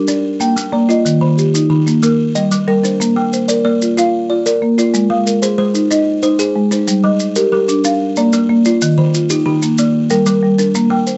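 A woody, up-front marimba struck with medium mallets carries arpeggios through this hypnotic fragment of southern African traditional music: an mbira-style interlocking cycle in 12/8 at 124 BPM, in Bb mixolydian. A bright, buzzing kalimba with a thumbnail pluck shares the arpeggios across the same span, while grainy, saturated maracas add mellow percussion from 0.1 seconds. The chords circle through Bb, Eb, Gm and Ab within a moderate booth ambience and a dark, warm production.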